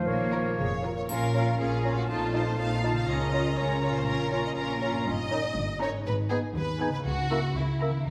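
A brief, pure flute note opens this playful, whimsical Bb minor film cue at 120 BPM in 2/4, sounding alongside a dark, very quiet clarinet, a mellow bassoon, distant sustained French horn chords, ringing fingerpicked harp arpeggios and lush cellos, as an oboe in the background and smooth double basses join, with violins carrying the sneaky, magical melody from 0.3 s over a focused second violin line and expressive violas, a close, dry triangle sounding from 1.1 s to 2.1 s, and a wet scoring-stage reverb setting the scene.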